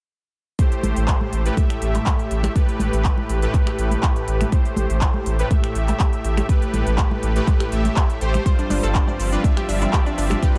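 A soft, smooth supersaw plays detuned stabs with delay and sidechain pumping over an up-front, deep electronic kick and a crisp, overdriven dance kit of finger snaps, handclaps, hi-hat and shaker, joined at 0.8 s by a round, dark analog bass and close, dry congas and cowbell in the background, all setting an expansive, dreamy progressive house groove at 122 BPM in A minor on Am7. At 8.5 s the harmony moves to G7sus4 as a clear chamber string section enters with focused, bowed sustained chords behind a bright, warbling analog pluck playing detuned arpeggios with chorus and delay. The excerpt, cut from a longer piece, sits in a digital ambience.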